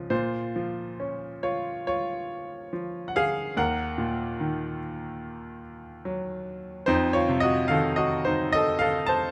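Melancholic and reflective, this short cut from a longer classical piece is a lyrical solo piano study in B-flat minor, moving at roughly 68-74 BPM in 4/4 with a flexible, rubato feel. A bright grand piano carries everything alone from 0.0 to 9.3 seconds, ranging from Eb2 up to A5. Its tone is brilliant and polished, sitting up front with a present, detailed character and a short sustain. The harmony travels from Bbm to Ebm at 3.6 seconds, then reaches F7 at 6.9 seconds, leaving the phrase poised on that dominant chord. Close microphones capture the instrument intimately, with only a light reverb adding a touch of space around it.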